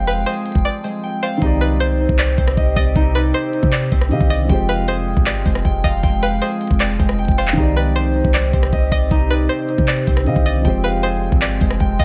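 Dark and eerie, this half-time trap cut pairs a knocking, overdriven drum kit and a deep, boomy 808 bass with a ringing fingerpicked harp through low-passed delay, a twangy chorused resonator pluck, and a glassy FM pad and boxy, mellow piano set in the background over a dry mix with a brief break from 0.6 to 1.4 seconds.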